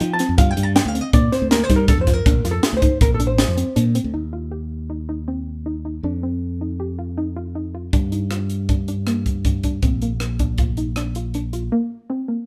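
A dark, clean hollow-body jazz guitar takes a brief fingered solo in this driving, intricate progressive instrumental in 5/4, falling silent at 3.8 seconds as the harmony moves from Gm7 and Bbmaj9 toward Eb6, F5 and Bbadd9. Beneath it, a soft, round synth pluck with a warbling chorus spins arpeggios throughout, while a bright, growly fingered electric bass sits punchy and up front. A crisp, polished fusion drum kit with a high-tuned snare and tight kick plays until 4.0 seconds, then returns at 7.9 seconds, all captured as a band playing live in one room with light reverb in this short cut from a longer piece.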